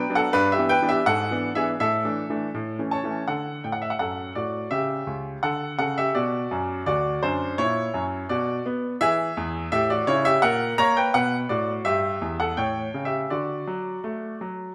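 A classical-period piano sonatina in D major, this short excerpt moves at 84 BPM in a straight 2/4 and carries a playful, elegant mood. A clear baby grand piano plays solo throughout, ranging from C#2 to A#5 with a natural, up-front presence. The opening phrase passes through Em7/G, E7/G#, and a suspended Asus4 resolving to A, setting up a move to D at 3.3 seconds. From there the harmony travels through C#dim, Bm, and F#7/A#, then on through E, A7, and F#/A#. It settles via Em/G and A7 onto D at 13.3 seconds. A moderate recital hall reverb gives the instrument a gentle sense of space around its clear tone, and the passage is cut from a longer piece.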